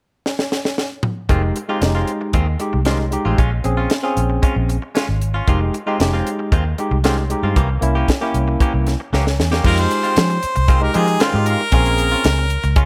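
Soulful and brooding, this short cut from a longer straight-eighth soul blues sits in F minor at 115 BPM in 4/4. A tight funk drum kit opens with a fill at 0.2 seconds, its dry, high-tuned snare and tight kick up front alongside crash, hi-hat and toms. At 1.3 seconds the band arrives: a dark, round, foam-muted electric bass up front, a barky tine electric piano in accompaniment, and a twangy, direct-recorded clean guitar playing picked, compressed stabs bathed in spring reverb, moving through Fm7, Bbm7 and C7b9. Another drum fill leads to 9.6 seconds, where a clear harmonica takes a jazz-style solo up front, with light vibrato, tongue slaps, scooped notes and a slapback echo. Behind it, a bright horn section holds sustained chords in the background with a touch of vibrato, all set in a light reverb.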